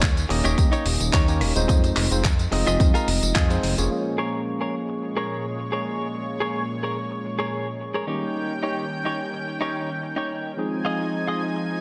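A dreamy, reverb-soaked mix bathes this sleek, groovy nu-disco excerpt in a moderate hall ambience, with a gentle swing on the sixteenths. For the opening 3.5 seconds a punchy, overdriven electronic kick sits alongside a gritty, tape-warm sampler-style kit of handclaps, hi-hat, rim click and tambourine, which carries on until 3.9 seconds, while a fat, detuned sawtooth bass pumps beneath them with tube saturation. A clean, direct-recorded electric guitar plays a riff throughout, its tone shimmering through lush chorus, a low-pass filter and analog delay. A bright, barky tine electric piano enters at 0.3 seconds with accompaniment through a combo amp, filtered and pumping with delay trails. At 3.9 seconds, as the drums and bass drop away, a thick, airy unison pad joins with sustained chords, its detuned sawtooth and square layers chorused and pumping up front while the harmony moves from Bbm7 through Eb7 to Fm7.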